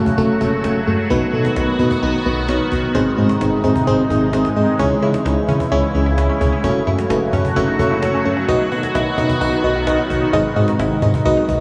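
Drenched in a huge, dreamy reverb with a hint of small-room ambience, this cool, nocturnal synth-pop excerpt at 130 BPM in 4/4 sets a full-bodied, tremolo-laden FM electric piano up front beside a bright, evolving resonant pad of detuned, ring-modulated sawtooth tones with chorus, over a mellow sawtooth-and-triangle synth bass with vibrato and a snappy, hard-handed cajon tucked in the background, while a nasal, round analog pluck adds arpeggios through chorus, phaser and diffuse delay from 4.8 s, as the harmony cycles through F#m, B, G# and C#m.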